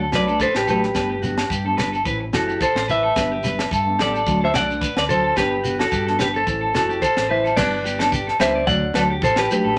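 Carefree highlife guitar band music, cut from a longer piece with a light 16th-note swing, sets a twangy, up-front clean electric guitar melody over a second clean electric guitar's picked arpeggios, a dark, full-bodied thumb-plucked nylon-string guitar accompaniment and a round, deep dub fingered electric bass, while a tight funk drum kit with a high-tuned snare, tight kick and crash cymbal plays alongside ringing agogo bells in the background and a grainy, mellow shekere, in a wet studio reverb.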